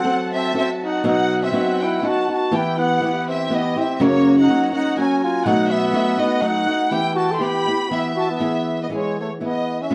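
Romantic and festive at once, this mariachi excerpt from a longer Mexican folk piece moves in a rubato 3/4 around 122 BPM in E harmonic minor. A woody studio violin section carries the melody up front, bowed with vibrato and a soft attack, its sound set back slightly in a plate reverb. Beneath it a dark trumpet plays a smooth-topped second line in a classical style, with light vibrato. An acoustic flamenco guitar, fingerpicked and placed up front, supplies the accompaniment through a progression that runs from F#dim through B, Em, F# and B7 before landing on E. In the background a veiled, con sordino chamber violin section holds sustained chords until 8.4 s, when a new section begins and the other three parts carry on to 9.9 s in a moderate studio room.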